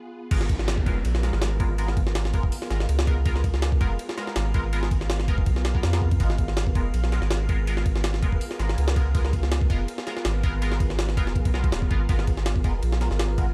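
Atmospheric and raw, this drum and bass jungle excerpt opens on a silky string machine pad with vintage 12-bit sampler grit, and at 0.3 seconds a compressed, pitched-up sampler-style drum kit with a thumpy kick and high-tuned snare drops in up front, joined by a deep, round dub sub bass, nasal band-passed chord stabs carrying phaser and dub echo, and a very quiet downlifter, while a glassy texture of drifting harmonics emerges at 2.0 seconds in a dark, dry mix.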